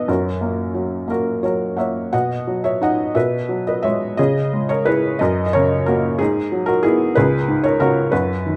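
Tender and intimate, this brief fragment of a lyrical classical solo is played on a felt-muted upright piano in B major, moving in a rubato 6/8 at around 58-63 BPM and tuned to A4 = 438 Hz. The piano sits up front with a soft, mellow tone, short sustain and audible action noise, and a small fill between 1.1 and 2.1 s leads into the restated opening phrase. The harmony passes from F# through B, Eadd9/B, C#m, F# again and G#m7 on to C#5, all carried by a moderate recital-hall reverb of 1.4 s.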